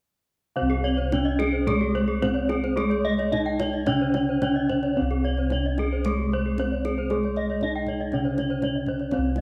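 Heard in a reverberant echo-chamber space, this hypnotic, brilliant Balinese gamelan excerpt in C pelog moves at 109-122 BPM in a straight 4/4, as a wooden-mallet bronze metallophone carries the melody with shimmering paired-tuning beats over a low metallophone accompaniment, bright horn-mallet metallophones ring out arpeggios, one airy and set back in the mix, mellow padded-beater bossed gongs sit up front on the bass, and a tight, hard-handed kendang taps away in the background, all entering around 0.6 to 0.7 seconds.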